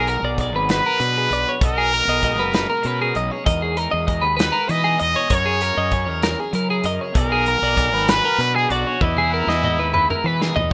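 A breathy, whispered trumpet carries the melody up front over bright twelve-string electric guitar arpeggios with tape echo, while a second twelve-string guitar adds spring-reverbed accompaniment in the background, a growly fuzz bass drives underneath, and a loose indie drum kit with a tight kick and rolled-off top plays through to a fill at 9.0 seconds, giving this intricate, bright math rock and midwest emo excerpt in 6/8 at 65 BPM, moving through lush E lydian chords like Emaj9#11, the feel of a rough home demo.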